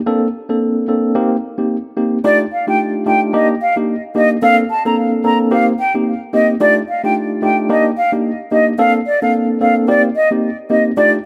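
A clean tine electric piano, up front and heard through built-in speakers, opens this sunny, joyful afrobeats excerpt at 110 BPM in Bb major, comping a swung 16th-note groove over Bbmaj9, Cm7, F13 and Ebmaj7 chords, before a pure, hollow concert flute with vibrato and tongued notes enters close-miked at 2.3 seconds to carry the melody through a digital delay, all set in a light, small-room reverb.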